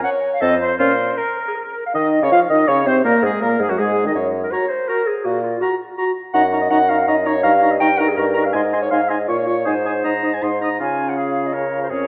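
A pure, silvery concert flute carries the melody of this quick, cheerful classical-period movement for wind quintet, its tongued line carrying a gentle vibrato from a slightly distant place in the room. The clarinet, the most prominent voice in the blend, starts alongside it at 0.0 seconds as accompaniment. At 0.4 seconds the oboe joins with a second line, the clear French horn adds a vibrato-tinged accompaniment in its middle register, and the bassoon lays down the bass with its own vibrato, sitting up front. Moving in a spirited 3/4 at 162 BPM with a straight feel, the harmony passes from F7 through Dbmaj9, Gb69 and Gb/Bb. It settles into Db major from 6.3 seconds, turning through Ebm7/Gb, Eb7/G, Ab and Bbm before landing on Db. A wet scoring-stage reverb and a dark, warm production give the quintet a roomy sound in this short section cut from a longer piece.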